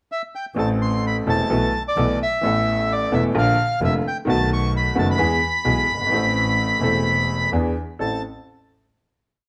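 A passionate, sultry tango in A minor at 129 BPM in 4/4, played with a rubato feel and heard as a whole short piece. The bandoneon opens at 0.1 seconds with a reedy, vintage, band-limited tone, sitting up front and carrying a motif-based melody built from song-like phrases. A clear baby grand piano joins at 0.5 seconds, also up front, with a natural, short-sustained sound that drives the accompaniment in the tango rhythm of uneven groups of three and two eighths. A dark double bass enters at 0.6 seconds, a single bowed player with vibrato and a nasal, woody, boxy character, sharing that same uneven tango rhythm in the low register. After a brief pickup, the harmony moves from Am through Esus4/B, Asus2, Bb, B7 and E before returning to Am, with E7 leading to a closing Am chord that rings out to the end. Light reverb gives the trio a modest sense of space.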